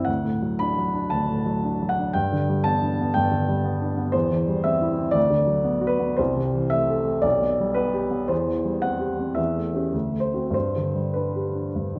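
A clear grand piano opens on a D chord and carries this lyrical, passionate romantic character piece alone for its full 12 seconds. Set in G major and 4/4, it moves with a rubato feel, with the tempo drifting between 98 and 123 BPM. The harmony travels from G through C/E, Bm/D, Am/C and G/B, returns to C/E, then gathers through A7/E and D9 before settling on G at 10.5 seconds. The piano's tone is smooth with a vintage quality, spanning B1 to B5 and sitting up front in the mix, tuned slightly high to A4 = 441 Hz. A wet recital hall reverb with a 1.6-second decay surrounds the instrument, and the passage is cut from a longer piece.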